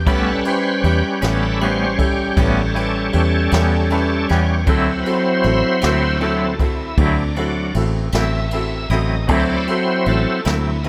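A gritty, overdriven tonewheel organ opens this laid-back, soulful slow blues, shouting out sustained chords through a slow rotary speaker with chorus vibrato and a touch of key click, joined by a round, foam-muted electric bass sitting up front. Moving in a relaxed 12/8 at 52 beats per minute, the band quickly fills in with a jazz brush kit of dark cymbals, a medium-tuned snare and a boomy kick, plus a twangy, scooped clean electric guitar shimmering with tremolo. The organ carries the solo throughout this short excerpt, while a brilliant grand piano stays in the background and adds a fill from 3.5 to 4.7 seconds. The harmony rests on an A9 chord before shifting to D9 at 4.7 seconds. A light reverb gives the natural studio room a soft glow around the players.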